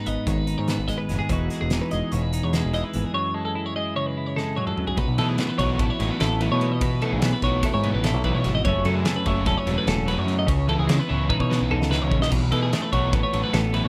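A growling, overdriven electric bass sits up front in this intricate, wistful math rock and midwest emo excerpt at 294 BPM in 9/8, joined by a compressed, warm twelve-string electric guitar on chords and a bright, twangy twelve-string weaving high arpeggios, while a loose indie drum kit with a fat snare, punchy kick and dark cymbals plays fills at 4.4 and 11.1 seconds, and a crunchy, double-tracked overdriven guitar riff with spring reverb enters in the background at 5.2 seconds as the chords move from G#m through jazzy ninths to B7sus4, all in a dry, rough home-demo mix.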